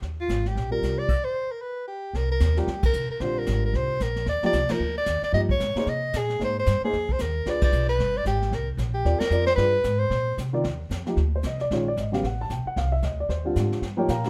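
A close, intimate studio sound with a moderate room reverb frames this short cut from a longer jazz piece, a sophisticated and playful small-group swing and bop number at a brisk 226 BPM in 4/4 with a swung feel. The woody upright bass sits up front, plucked on steel strings with a dark tone, while a brush kit adds dark cymbals, a high-tuned snare and a boomy kick from the room. A bright soprano saxophone carries the melody up close, with vibrato, soft attacks and scooped notes in a solo jazz voice, and it stops at 10.4 s. A mellow grand piano comps with short sustain and audible action noise, moving through rich chords like Cm9, Fm11 and G7b9. The band hits accents together at several points, and at 10.6 s the harmony shifts from C minor to Eb major as bass, drums and piano carry on to the end.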